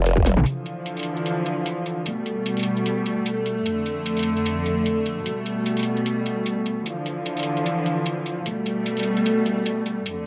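The electronic kit opens this heavy wobble dubstep passage, cut from a longer piece, entering at 0.1 seconds with bright, filtered hi-hats, toms and an overdriven, layered bite, and a drum fill follows at 0.3 seconds. Dark studio strings join at 0.5 seconds, bowing sustained chords low in the register with light vibrato and a reedy, gut-string, period-style tone that sits distant yet up front, pumping against a sidechain. The tempo is 150 BPM in 4/4, felt in half-time with a swung sixteenth-note lilt, and the mood is chaotic and heavy. The harmony moves from Dmadd9 through Gadd9 and F6, then returns to Gadd9 and Dmadd9 before settling on Gadd9 again. Light reverb surrounds the parts, and the drums stop at 10.1 seconds, just before the strings close at 10.3 seconds.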